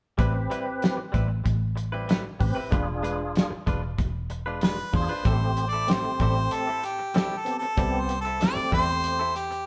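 A clear harmonica takes the melody at 4.6 seconds, sitting up front over a mournful, smoky straight-eighth soul blues in A minor at 95 BPM, cut from a longer piece. Underneath, a cloth-damped drum kit gives a thuddy feel with a fat snare, tight kick and rolled-off top on hi-hat, kick and snare, while a vintage fingered bass adds a dark, round, foam-muted low end. A tonewheel organ fills out the accompaniment with a full, clean sound through a slow rotary speaker and chorus vibrato, and a direct-recorded clean electric guitar adds bright, twangy, compressed picked stabs. The harmony moves from Am9 to E7b9 and settles on Am7 as the second section begins at 5.2 seconds. The band sounds like it is playing live in one room, wrapped in a moderate stone room reverb.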